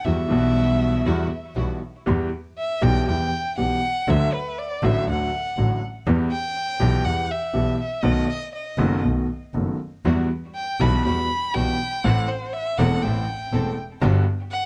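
A rubato tango pulse in 4/4 at 120 BPM drives this passionate, nostalgic excerpt in E minor. Up front, a warm violin sings an expressive, smooth-topped line with vibrato and portamento, colored by an analog delay. A polished baby grand piano accompanies with a clear, present tone, while a bowed double bass adds an earthy, nasal low end with light vibrato and an airy bow. In the background, a bright, lush studio string section punctuates with intense, biting stabs through analog delay, first at the very start and again from 10.1 seconds. The harmony moves from Emadd9 through Em, D, B7 and Am to Gmaj7, heard in a small room with the grain of cassette tape.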